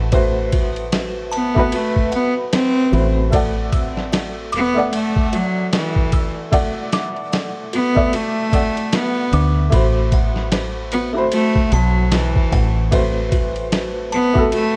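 Worn, warbling cassette tape with a pitch that drifts and a small room's ambience gives this hypnotic, cinematic trip hop excerpt, cut from a longer piece, its aged character. At 75 BPM in 4/4 with a swung sixteenth-note feel in A dorian, a gritty, compressed, pitched-down sampler-style drum kit sits up front, its thumpy kick, medium-tuned snare and ride cymbal carrying a tape-warm tone. Beneath it, a deep, dark dub bass, fingered, foam-muted and round, sits up front too, thickened by tube saturation. A soft, felt-muted upright piano plays intimate, mellow accompaniment with audible action noise, colored by tremolo and tape echo, while a delicate, tinkling music box spins arpeggios in the background through its own tape echo. From 1.3 seconds a bright, biting cello takes the melody, bowed by one player with light vibrato and a nasal, earthy edge, trailing dub echo over chords that move from Am69 to D and back to Am69 at 9.7 seconds.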